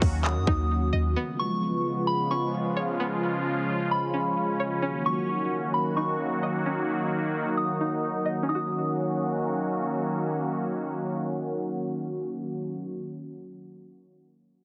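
This atmospheric cloud-rap excerpt opens with a brief burst of trap drums, its hard-clipped kick, crisp hats and handclaps roughened by vintage 12-bit sampler grit, over a deep, boomy 808-style bass. Both sit up front, but the drums drop out almost at once and the bass soon follows. Meanwhile a bright, airy sawtooth pad sustains detuned, evolving chords, shaped by sidechain pumping, chorus and a low-pass filter, with a filter sweep running through the opening stretch. Threaded through it, a twangy, string-like resonator pluck plays arpeggios with chorus and delay, while from 0.2 seconds a soft, pure FM bell sings a gentle, warbling melody high above. The harmony moves from Ebm7 to Db7 and back under a half-time feel, and light reverb with heavily compressed, radio-like processing frames a spacious, ethereal mood, the pluck lingering last until 13.4 seconds.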